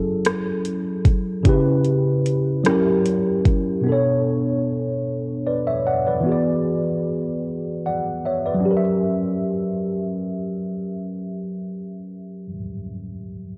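In a slow, straight 6/8 at 50 BPM, an up-front electronic R&B drum kit with a knocking kick, metallic hi-hats and rim clicks plays until 3.6 seconds while a very quiet, dark, round, foam-muted fingered electric bass sounds only briefly at the start, leaving a worn, slightly out-of-tune tine electric piano, clean through a combo amp and coloured by analog chorus and cassette tape, to carry the sultry late-night mood alone over chords from F#m9 through Bm9 and E7 to F#7b9, all in the light reverb and intimacy of a home cassette recording cut from a longer piece.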